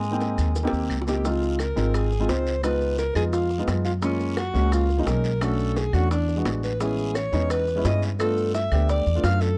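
A lively, danceable Afro-Cuban jazz excerpt opens with an intimate, whispered alto saxophone melody over a pizzicato upright bass that sits up front, while a bright trombone sounds only until 0.9 s. A concert grand piano with deep bass and short sustain voices rich ninth chords, and tight, high-tuned bongos, woody claves and grainy maracas stay in the background as a raspy guiro comes through close and dry. The dry, close small-room sound has a 1970s studio character, bringing out the saxophone's subtone, scooped notes and vibrato.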